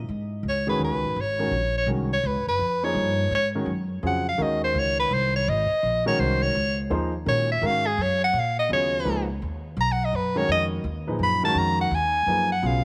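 A clear soprano saxophone carries the melody as a solo from 0.5 seconds, its light vibrato and soft attack sitting up front over a hypnotic, spiritual jazz waltz in 3/4 at 168 BPM with a swung feel. A growly, woody pizzicato upright bass anchors the low end from the start, while a warm baby grand piano joins at 0.7 seconds with natural-sounding accompaniment, the harmony moving from Ab9sus4 to Bmaj9 at 8.7 seconds. Light reverb and a small room ambience frame this short excerpt cut from a longer piece.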